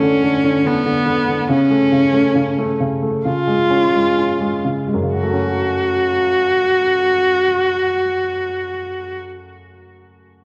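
A single dark, intimate cello, bowed sul tasto with vibrato, a soft attack and an airy, smooth top, carries the melody up front over a natural-sounding baby grand piano in this heartbroken, emotional pop excerpt in F# minor at 62-72 BPM, slowing through the first 5.1 seconds as the chords move from D5 through A/C# and C# to F#m, with the cello falling silent at 9.2 seconds before the warm piano ends at 10.4 seconds, the pair set in a wet concert hall reverb and the worn, warbling pitch drift of old cassette tape.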